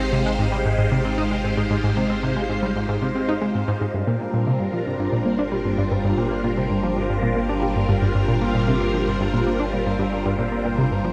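A tight, driving sequenced synth riff with detuned sawtooth bite, 12-bit sampler grit and tape echo sits up front over swirling phased string-machine chords, a deep, round analog bass and a bubbling, resonant stepped-filter texture in the background, shaping a hypnotic, expansive slice of ambient space music at 114 BPM in G phrygian that moves from Abmaj7 to Gm7 at 3.9 seconds within a moderate plate reverb.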